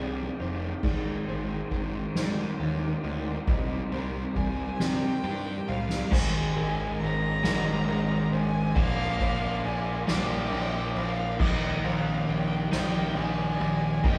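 Over a slow, straight 6/8 pulse from a soft-mallet drum kit with a boomy kick and dark cymbals, this brooding, melancholic post-rock excerpt builds for its first 6.1 seconds on fuzz-laden bass, lush background strings, a very quiet felt-muted piano, twangy twelve-string arpeggios and a crunchy overdriven guitar riff, then a drum fill leads into a second section where a second overdriven guitar riff takes over and a distant, woody sul tasto violin melody, which entered at 4.4 seconds, sings through a moderate large-room reverb.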